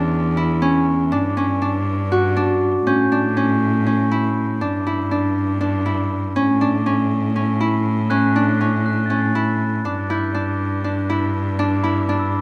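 A fingerpicked Celtic harp rings out up front with warm, acoustic arpeggios, setting a hopeful, playful tone for this contemporary chamber piece in 7/8 with a straight feel. A clear, focused cello, bowed by one player with vibrato, carries the bass close by. A soft glockenspiel struck with rubber mallets adds mellow, bell-like touches in the background from 2.9 seconds and again from 8.1 seconds, all set in a moderate recital hall reverb, in a passage cut from a longer work.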